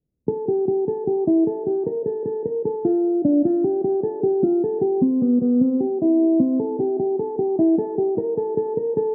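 In a half-time feel over a 4/4 pulse at 152 BPM, this short hip hop excerpt cut from a longer piece has a hard-hitting, menacing mood in A minor, tuned slightly flat with A4 at 437 Hz. The only part is a mellow electric guitar carrying the melody from 0.3 to 9.1 seconds, moving between B3 and Bb4. Its tone is dark, clean and fingered, compressed and placed up front, and shaded by a low-pass filter. A filter sweep runs across the whole stretch from 0.3 to 9.1 seconds. Light reverb and an overall low-pass filter give the recording a muted sound.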